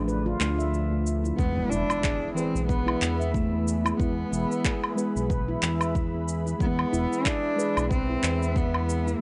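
A dark, bowed cello with expressive vibrato and portamento carries the melody up front from 1.4 s, over a warm, earthy organic downtempo groove at 92 BPM with a swung 16th feel, cut from a longer piece. Beneath it sit a smooth, mellow synth bass with tube saturation, a ringing handpan playing arpeggios through tape echo, muted felt-like synth keys and a vintage, warbling analog pad in the background, both pumping with sidechain, while electronic cabasa, handclaps and woodblock tick along with a tape-warm, small-room character. The opening break pairs a barely audible bronze singing bowl with the Dm chord before a deep electronic kick and a background impact arrive at 1.4 s on the shift to E, all inside a dry, gritty digital ambience.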